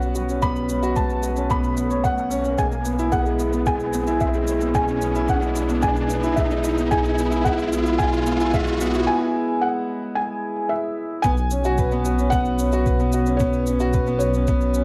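Piano and strings electronica at 111 BPM in 4/4 with a straight feel, this intimate, melancholic excerpt from a longer piece has a homespun cassette character and a moderate small-room reverb. A felt-muted upright piano carries the melody high in its range, its soft, mellow tone and short sustain dressed in cassette tape color and plate reverb, while a concert grand plays a riff with deep bass, a boxy quality and long sustain, sitting up front. Beneath them, a dark detuned saw bass holds a rumbling, beating low B with sidechain pumping, and a faint overdriven electronic shaker runs from the start, joined at 0.4 seconds by a sampler-style kick, pitched down, muffled and thumpy. The harmony moves from Bsus2 to E/B at 2.6 seconds during a build-up lifted by an electronic riser that runs until 9.1 seconds, followed by a brief break. At 11.2 seconds the drop arrives and the harmony returns to Bsus2.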